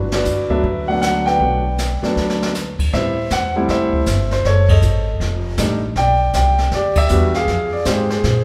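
Warm and swinging, this short excerpt from a longer piece catches a jazz piano trio in G major at 158 BPM in 4/4, with a lilting swing on the eighth notes. The concert grand piano carries the melody up front, its tone open with deep bass and long sustain, moving through Gmaj7 before the harmony shifts at 2.9 seconds to Am7 and on through F#madd9, F13, Em7 and Fm7. Beneath it, the pizzicato upright bass sounds woody and growly, with a thumpy, steel-string attack. The brush kit sits distant and roomy, pairing dark cymbals with a boomy kick and a medium-tuned snare, and it slips in a short fill around 2.2 seconds. The band hits accents together at 0.1, 4.6 and 6.9 seconds, all bathed in the lingering reverb of a recital hall or church.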